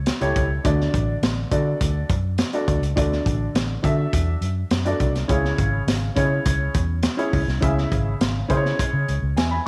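A crunchy, gritty breakbeat drum kit with a punchy kick and high-tuned snare sits up front in this driving, urgent excerpt of uptempo 1960s-style soul, alongside a round, foam-muted fingered electric bass and a dark, woody, slightly detuned upright piano moving from A7 to D and then C#m around 5.3 seconds, all bathed in a moderate echo chamber reverb.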